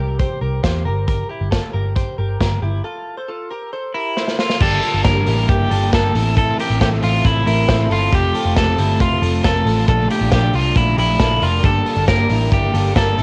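A homespun cassette sound with light small-room reverb frames this short cut from a longer piece of jangly indie pop, bittersweet and wistful, moving at 136 BPM in a straight 4/4 and set in G dorian. From the start, a clean, direct-recorded electric guitar picks arpeggios in the background through a lush chorus, while a dark, round, foam-muted picked bass with transformer saturation sits up front. A vintage drum kit joins at 0.2 seconds with a punchy kick, medium-tuned snare and dark, rolled-off cymbals. During a break, a twangy, fingered lead guitar on the edge of break-up takes up the melody from 3.9 seconds, just ahead of a short drum fill. At 4.6 seconds the arrangement fills out with a crunchy overdriven guitar and a full-bodied, slow-attack sawtooth string machine on violas, its sustained chords shimmering with ensemble chorus behind the band. The harmony drifts through chords like Gm, Fmaj7, Gmadd9, Am and Bbmaj7, giving the passage its gently aching, nostalgic colour.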